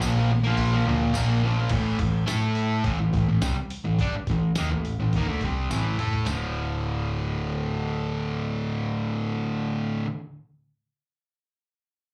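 Menacing and swaggering, this garage rock excerpt sounds like a live gig heard through a club PA, with a bright, double-tracked fuzz guitar riff up front over a dark, round hollow-body electric bass with overdrive. A muffled, pitched-down sampler-style drum kit with a thumpy kick and handclaps drives the groove alongside a jingly vintage tambourine in the background, as the chords move from Bb to A5 at 1.7 seconds. A drum fill from 5.7 seconds leads to a D5 section, where the drums and tambourine drop out and guitar and bass carry on alone until about 10 seconds.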